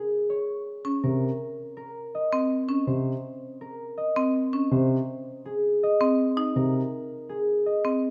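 A mellow, thumb-plucked concert harp opens this urgent yet meditative minimalist classical fragment at 163 BPM in 5/4, carrying a ringing melody that is joined at 0.8 seconds by bright, woody hard-mallet marimba arpeggios and then by a dark concert grand piano playing a deep bass accompaniment until 6.8 seconds, all placed up front in a moderate recital-hall reverb as the harmony moves from Bbm7 to Abadd9.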